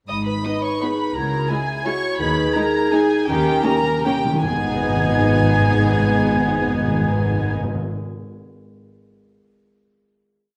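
This is a short, complete orchestral ballroom waltz in G# minor, in 3/4 at roughly 145-184 BPM. It opens with a bittersweet, dark mood as most of the string and wind body sounds together. A violin section carries the tune high and intimately, played sul tasto with light vibrato. A second, darker violin section doubles it an octave below. Beneath them, a symphonic cello section holds a pure, floating bass on the beats, doubled by a shadowy double bass section, while a solo clarinet with a smooth top and an airy flute ensemble hold sustained chords above and within the texture. At 0.4 s a viola section adds after-beat and sustained chords, and a mellow French horn section enters distantly with a counter-melody. The rubato pulse slows toward a D#7 chord, where soft-mallet timpani come in at 3.3 s with a round roll. The piece settles on a final G# minor chord from 4.4 s, all of it wrapped in the lingering reverb of a recital hall.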